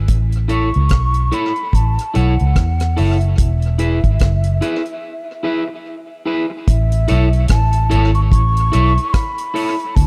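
A nearly reverb-free, echo-heavy mix carries this laid-back, sunny roots reggae excerpt at 73 BPM in A major. Up front sits a dark, round, foam-muted electric bass beside a dry acoustic drum kit with a tight kick, hi-hat and rim click. From 0.5 seconds a slightly broken-up, twangy electric guitar and an airy, hollow concert flute with vibrato both trail tape echo, a break arrives at 5.0 seconds, and the harmony moves from E back to A at 6.7 seconds.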